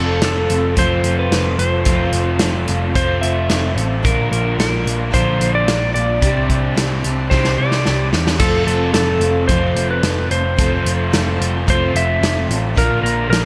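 An open-road, nostalgic mood runs through this short folk rock and heartland rock passage, moving at a steady 110 BPM in a straight 4/4. A clean, warm lap steel carries the melody with slide and volume swells, sitting between A4 and E5. Beneath it, a lo-fi, overdriven garage guitar, double-tracked with a subtle chorus, plays a picked riff. A full-bodied jumbo acoustic guitar, treated with ensemble chorus, adds picked accompaniment in the background, finger squeak and all. A dark, round hollow-body short-scale bass and an up-front country drum kit with a punchy kick, a medium-tuned snare, hi-hat and crash hold the groove, and the drums break into a fill at 7.3 s. The harmony moves through F, Bb and Csus2 before returning to F, all under a moderate plate reverb and bright 1980s-style digital production.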